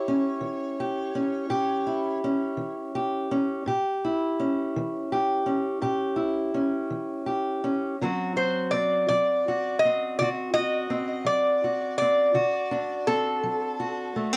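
Acoustic country blues with a swaggering, rollicking mood, this short cut from a longer piece rolls along in 12/8 at 55 BPM in A mixolydian, moving from A7 to D7 at 8.0 seconds. Up front, a lap resonator guitar played with slide and fingerpicks carries the melody with a metallic, nasal bite and a touch of tape echo, while a fingerpicked steel-string parlour guitar with old strings supplies a dark, woody, boxy accompaniment. The duo sits in a moderate studio reverb with the grain of a home cassette recording.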